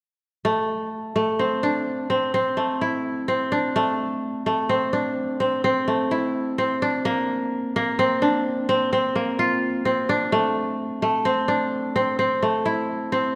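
A solo kora opens at 0.4 seconds with fingerpicked arpeggios, its crisp, ringing acoustic tone sitting up front in a lush concert-hall reverb. This restless yet hopeful contemporary instrumental moves at 128 BPM in a straight 7/4, circling from Amadd11 to Bbadd9 at 7.1 seconds and back to Amadd11 at 10.3 seconds. The fragment, cut from a longer piece, ends at 13.4 seconds.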